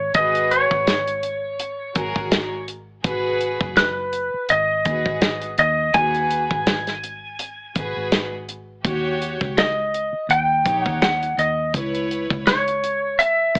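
Twangy, compressed lap steel carries the melody up front in this brooding, smoky soul blues excerpt, over a round, foam-muted fingered electric bass, earthy bowed chamber strings holding sustained chords in the distance, and a roomy soul drum kit with tight kick, hi-hat and snare, the whole mix coloured by light reverb and an AM radio sound as the harmony moves from G#m7 to D#7#9 and C#m7.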